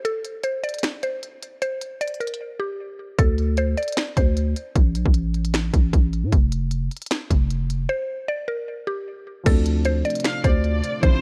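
A woody, round mallet-like synth pluck carries the melody up front in this brooding, melancholic trap excerpt, its mellow tone treated with chorus and delay as it plays from the start to 4.7 seconds and returns at 7.9 seconds. The half-time groove at 153 BPM in D minor comes from an electronic trap kit with a hard-clipped kick, sharp snare, crisp hats, finger snaps and crash cymbal, sitting forward in the mix. A growling, buzzy 808-style bass enters at 3.2 seconds with fast-attack, decaying notes, adding weight beneath the pluck. Near the close, a dark, boxy concert grand piano comes in at 9.4 seconds as the harmony settles on Dm7, soon joined by a deep, moody ambient pad with chorus and its own reverb in the background, and a lush, distant violin section bowing an expressive second line with vibrato. The dry mix has a worn, warbling cassette-tape character with drifting pitch.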